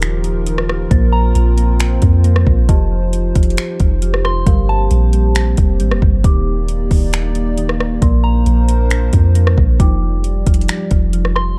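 A half-time 4/4 groove at 135 BPM drives this hazy, spacious slice of atmospheric cloud-rap, carried by a smooth, overdriven electronic drum kit up front, with its soft kick, metallic hi-hats, finger snaps and rim clicks. Beneath it sits a deep, round 808-style bass with a sine-like body that decays after each fast attack. A dark, moody analog pad holds sustained chords through chorus and a low-pass filter, its detuned, wave-folded tone pumping against the sidechain. Soft, mellow electric-piano-like synth keys play background arpeggios through chorus and digital delay, while a delicate, sweet celesta adds bell-like texture further back. A pure FM synth bell carries the melody from 1.1 to 5.3 seconds and returns at 8.2 seconds, its gentle tone shaded by phaser, chorus and delay. The chords move from Ebmaj9 through Bbmaj9, F13 and Gm11 before settling on Fsus2, all wrapped in a dark digital ambience.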